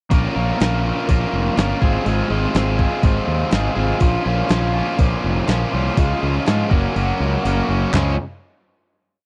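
Jangly and upbeat, this short indie rock piece at 122 BPM pairs a bright, overdriven, double-tracked electric guitar strumming riff chords up front with a growly, fuzz-laden fingered bass driving eighth notes and a clean 12-bit drum machine's thumpy kick, fat snare, hi-hat, handclaps and toms in a big rock groove, all in a dry, close 1970s-style studio sound with digital ambience, moving from Bb minor through Db and Gb before the kick and snare drop out at 7.0 seconds and a final Db chord rings from 7.9 seconds.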